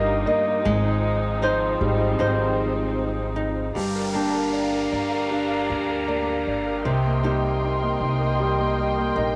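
Heartfelt and hopeful, this short excerpt from a longer pop ballad moves at a relaxed 78 BPM in a straight 4/4. A clear, intimate grand piano carries the accompaniment with long sustain and audible action noise, taking a solo through the opening 3.8 seconds and adding a brief fill at 8.8 seconds. Beneath it, a dark, lush string section holds bowed chords with vibrato and a smooth top, sitting up front, while a fingerpicked flamenco guitar weaves arpeggios and a woody, thumpy pizzicato upright bass anchors the low end. At 3.8 seconds an electronic downlifter slips in as the harmony moves from Eb and Fm7/Ab toward Gm7 and Cm7. The piano, strings and guitar carry a cassette-tape coloring, and light reverb gives the whole a homespun, lived-in feel.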